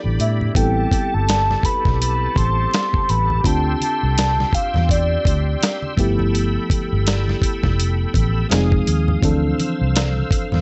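A dry, close sound with a dusty, rolled-off top end frames this smooth, introspective neo-soul R&B excerpt at 83 BPM in 4/4, swung on the sixteenths in D dorian, moving through chords like Am9, Dm11, G13 and a darker Fm7. A gritty, compressed sampler-style drum kit with a thumpy kick sits up front beside a round, foam-muted fingered electric bass, while a mellow FM electric piano accompanies, very quiet low-tuned congas add percussion, and a reedy, lightly overdriven tonewheel organ with fast rotary speaker and chorus vibrato holds sustained chords beneath. A soft octave-layered synth lead, full and triangle-toned with phaser, chorus and slapback echo, carries the melody from 0.2 until it stops at 5.9 seconds, leaving the groove to continue on its own.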